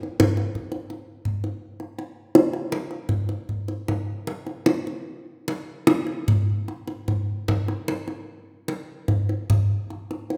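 A wet, spacious reverb with a 1.6-second tail surrounds this brief gamelan recording, giving it a serene, ceremonial air. A lone kendang carries the whole piece, sitting up front with a deep, acoustic tone and the hard attack of bare hands on the drumheads. Up close, the drum itself has the intimate character of a small room, even as the longer reverb lingers around it. The pulse moves at an unhurried 75-88 BPM in a straight 4/4. Cut from a longer performance, the passage shifts into a new section at 4.7 seconds, and the drum plays on until 10.4 seconds.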